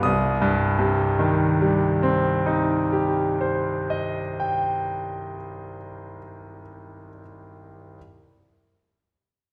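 Romantic classical character piece for solo piano, bittersweet and passionate in mood, moving in a flexible rubato triple metre. A bright concert grand carries the whole fragment on its own from 0.0 to 8.0 seconds, ranging from a deep bass register up into brilliant, polished treble. The piano sounds present and up front despite the listener being placed further back in the room. A wet recital hall reverb with a 1.5-second decay surrounds the instrument and lends the passage an ambient glow. Cut from a longer piece, this short extract rests on a single minor chord, giving it an unresolved, yearning quality.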